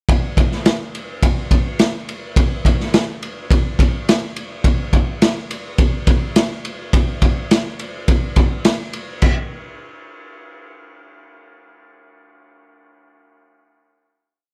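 A raw garage drum kit drives this short, complete rock piece at 105 BPM in a straight 4/4, with a confident, sunny mood. The acoustic kit, built on kick, medium-tuned snare, ride and crash cymbals, sounds gritty and saturated, its punchy kick and rolled-off top sitting up front in a small room that pumps around the hits. It settles into a big rock groove for the main riff section, which runs from 0.1 to 9.2 seconds. A final hit section follows from 9.2 to 11.5 seconds, with the drums stopping at 9.4 seconds. Little reverb colours the sound, keeping it close and direct.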